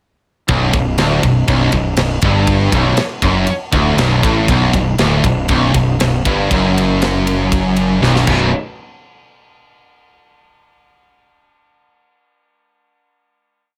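At 0.5 s a heavy metal riff in B minor crashes in at 119 BPM in a straight 4/4, with three picked electric guitars playing single-note lines low in the register, their heavy, epic mood carried by a driving rhythm section. Up front sits a bright, high-gain distorted guitar, while behind it a double-tracked overdriven stack guitar and a dark, sludgy overdriven guitar thicken the sound. A growly, fuzz-laden fingered electric bass, direct and amped, drives steady eighth notes that double the guitar riff an octave down into the deepest range. The tight metal drum kit, mid-forward in a studio room, pairs a tight kick and medium-tuned snare with crash and ride cymbals in a metal drive groove, then rolls into a drum fill from 8.0 s as the harmony moves from Bm to a B5 power chord. The band lands on a final hit at 8.5 s that rings out under light reverb until 10.6 s, closing this short, complete piece.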